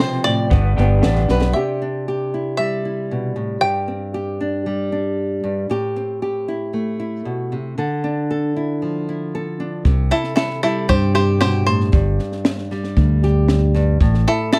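A bright, twangy banjo played with fingerpicks carries the melody in this gentle, peaceful acoustic folk excerpt, pausing after 5.4 seconds and returning for a solo at 9.9 seconds, over a small, fingerpicked nylon-string guitar that plays throughout. A slightly broken-up, lo-fi electric guitar with tremolo adds arpeggios only in the opening 1.6 seconds, while a dark compact cocktail kit with a punchy kick, a high-tuned snare and a brief fill, together with a direct, up-front fingered electric bass, sound briefly at the start and rejoin for the solo, all under light reverb.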